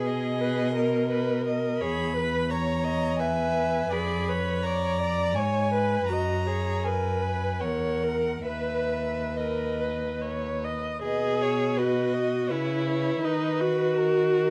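This classical slow romantic movement for string quartet is in B major and moves in 3/4 with a rubato feel between 66 and 87 BPM, serene and warm in mood. A single bowed violin with a clear, vibrato tone carries the melody high above the ensemble, while a second violin, rich and even with a close presence, sings a supporting line beneath it. The viola fills in the accompaniment with a focused vibrato, and the cello anchors the bass, sitting up front with a smooth top to its sound. All four players sound from the opening through 14.5 s, and the opening idea returns at 11.0 s. The harmony passes through G#m/B, C#m7/E and Fdim7 before arriving on B, heard in a moderate large-studio reverb with a dark production, as a passage cut from a longer work.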